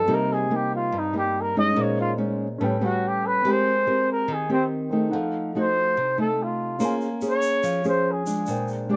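A straight 4/4 bossa nova groove carries this smooth, wistful fragment, where a dark, breathy trumpet solos up front with light vibrato and scooped notes over thumb-plucked nylon-string guitar and an intimate grand piano in the background with audible action noise, while a grainy, distant egg shaker joins at 6.8 s, captured with light reverb and close, detailed microphones as the harmony moves from Cm7 through Abmaj9 and F7b9 to Bbm9.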